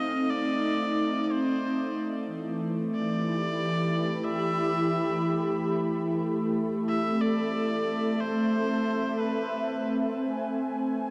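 Melancholic and serene, this slow ambient fragment in A minor drifts at 61 BPM in 4/4, moving through Em and Amadd9 chords inside a huge, dark reverb. A smooth, detuned analog pad sits up front with soft, chorused sustained chords, while a tense, string-like drone holds A3 with vibrato and a ring-modulated edge. A clear electric violin carries the melody between B4 and E5 with light vibrato, portamento and delay, falling away at 9.9 s as the pad and drone sustain to 11.1 s.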